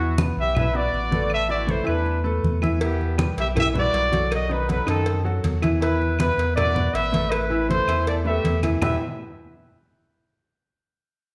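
A wet, large studio reverb with a 1.3-second decay surrounds this fiery, driving salsa, cut from a longer piece and moving at 160 BPM in straight 4/4 in E minor. An up-front trumpet section carries the melody between B3 and E5, its tone mellow yet punchy, with light vibrato, a smooth top and tight, pop-style playing. A clear grand piano accompanies with an intimate, natural sound and audible action noise, while a deep, round sine sub bass with a fast attack sustains underneath. Thick-skinned, low-tuned congas drive the percussion from the opening, joined a moment later by woody claves set in the background, and round, low-tuned cowbell and bongos, played with soft hands and sounding close and dry, join at 2.8 seconds. The harmony moves from Esus2 through Em7 and B7 back to Esus2, settling on E5 at 8.8 seconds.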